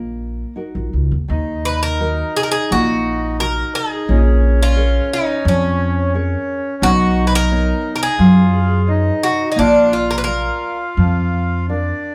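A picked, metallic Irish bouzouki carries the melody up front over fingerpicked, full-bodied nylon-string guitar and a woody, thumpy pizzicato upright bass on gut strings, with a reedy, dark accordion adding a smooth second line from 1.3 seconds, in this mournful, passionate fado-style ballad in Eb minor at a rubato 87 BPM, played live by a band in one room with light reverb and cut from a longer piece.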